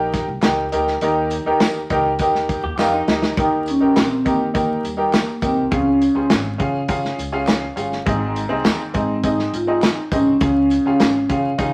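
A bright, slightly detuned upright piano and a dark, woody pizzicato upright bass open this joyful, danceable 1960s-style soul excerpt at 102 BPM in Eb mixolydian, joined at once by an up-front natural country drum kit with a tight kick and medium-tuned snare, plus tambourine and group handclaps set back in a live room. At 2.6 seconds a lo-fi, slightly broken-up electric guitar riff sounds in the background through a small old amp, and a drum fill carries into the melody at 3.4 seconds. From there a mellow vibraphone, played with soft mallets and a slow motor vibrato, rings out with a metallic, boxy tone over the Eb, Db and Ab chords, all framed by moderate studio reverb and vinyl crackle.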